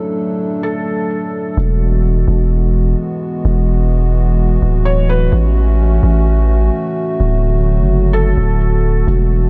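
Set at 128 BPM in 4/4 with a half-time feel, this atmospheric cloud-rap excerpt in E mixolydian floats in a blissful haze as a moody, detuned analog pad with chorus holds sustained chords from the start, moving from D through Eadd9 and A6 and back to D. A soft, felt-muted upright piano with audible action noise, filtered and echoed by delay, places brief, intimate melodic fragments at 0.6, 4.9 and 8.1 seconds. At 1.6 seconds a deep, sine-toned 808-style bass enters up front with long, decaying notes, all within a dark studio reverb.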